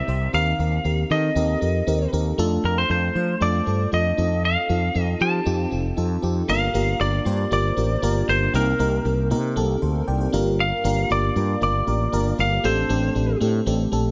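A lightly driven lead guitar, picked and slightly broken-up with a compressed edge, carries the melody through this nostalgic, moody 1980s-style pop passage, cut from a longer piece, over a lush, dreamy FM electric piano and soft pad layer whose chorus and phaser lend a detuned shimmer. A round, up-front fretless electric bass anchors the straight 4/4 feel as the harmony moves through Dm/F and F7 into Gm7 and Cm7 once the second section arrives at 6.5 seconds, with a brief electric piano fill at 9.8 seconds. Light reverb and digital ambience give the mix a mellow, softened top end.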